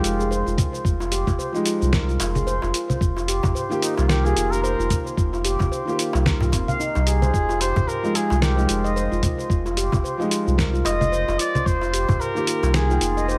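Organic downtempo in F minor at 111 BPM, earthy and hypnotic, with a swung 16th feel over Fm7 and Eb/F chords in a short cut from a longer piece. A bright, ringing handpan with delay sits up front beside a deep, round sub bass that pumps under sidechain compression. A boxy felt-muted upright piano, with audible action noise, adds pumping, delayed accompaniment, and a gritty sampler-style kit of congas, hi-hat, shaker and fat snare is joined by a thumpy electronic kick at 0.6 seconds and a crisp darbuka in the background at 1.0 seconds. After a brief opening note, the cup-muted trumpet returns at 3.8 seconds with a veiled, distant melody roughened by 12-bit sampler grit and delay, set in a light small-room ambience.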